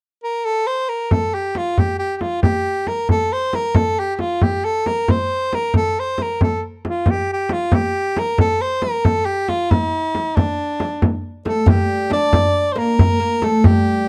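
A straight 6/8 pulse at 91 BPM, felt in dotted quarters, carries this longing, hypnotic Persian modal ensemble excerpt: an edgy soprano saxophone with light vibrato sings the classical-style solo melody, close-miked and up front in plate reverb, while an up-front frame drum, close and dry, enters at 1.1 s; a woody, deep, fretless oud, plectrum-plucked on double strings, adds a second line from 11.5 s, and a soft-handed tombak joins at 11.7 s in the background, all in a small room with a dark production.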